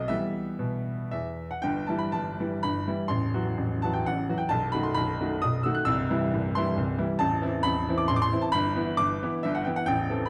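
The recording places a solo baby grand piano up front in a recital hall whose reverb is wet and lingers around 1.4 seconds, while the overall production is dark and warm. This is a short excerpt from a longer classical piece: a romantic triple-time dance in E minor with dotted rhythms, moving in 3/4 with free rubato between about 113 and 147 BPM. The mood is capricious and wistful. The piano tone is bright, brilliant and natural, with short sustain, and its range stretches from A0 up to F#6. After a brief opening on E minor, a new section begins at 1.6 seconds and moves through a half-diminished chord and B7 before reaching C, A minor and back to E minor over G by 8.5 seconds, with the piano playing throughout until 10.3 seconds.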